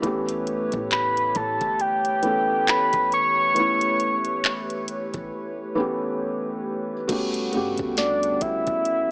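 Heard through light reverb and a digital ambience with a small-speaker quality, this dreamy, tender contemporary R&B fragment is cut from a longer piece and moves with a swung sixteenth-note feel in 4/4. A felt-muted upright piano sits up front, its thick felt giving a mellow, intimate tone with audible action noise, while a hollow, flute-like pad holds sustained chords beneath, shaded by chorus and a slow attack. A clean 808-style bass adds deep, boomy sine tones in the background, and a produced drum kit brings a knocking kick, sharp snare, metallic hi-hats, handclaps and crash cymbal. From 0.9 seconds an octave-layered synth lead carries the melody up front, its round, full tone built on a sub octave and coloured with vibrato, chorus and digital delay. A break arrives at 5.3 seconds, and at 7.1 seconds the harmony moves from A9 to Gmaj9#11 as a new section begins.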